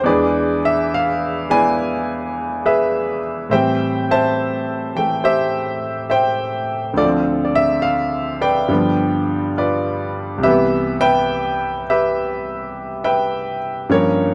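Swung eighth notes at a relaxed 69 BPM in 4/4 give this short fragment of solo jazz piano an unhurried, sophisticated lilt in C major. A single clear grand piano, miked close and up front with audible action noise, spans the low bass to the upper treble as it moves through E7, Am7, Dm7 and G7 before settling on Cmaj7 at 10.4 seconds. Light reverb keeps the natural, intimate sound feeling warm and personal.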